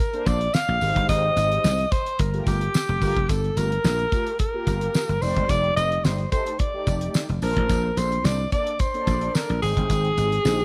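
A breathy alto saxophone leads up front with vibrato and a subtoned, smooth top, its jazz-styled melody ringing with slapback echo over a slick, late-night early-eighties boogie funk groove at 109 BPM in G minor. A dry, growly thumbed slap bass punches beneath a damped 70s drum kit with a fat snare and tight kick. Mellow, detuned sawtooth synth brass sustains dark chords through chorus and phaser across Bbmaj9, Abmaj7, Gm9 and F13, while a jingly tambourine sits close in the background of this small-room excerpt.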